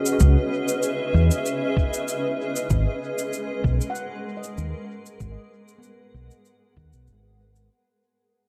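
Hazy and spacious, this excerpt of ambient dub moves at 96 BPM in G# minor with a light swing, drifting from C#m7 to G#m7 under a fade-out that spans its full 7.7 seconds. A blurred, detuned granular cloud pad sustains slow-blooming chords up front beside a round, punchy fingered electric bass, while a muffled, pitched-down electronic kick thumps in the background. A tape-warm cabasa adds texture, and a mellow, ringing handpan plays arpeggios from the back through a low-pass filter sweep and dub echo, all within a digital ambience and an echo-heavy mix.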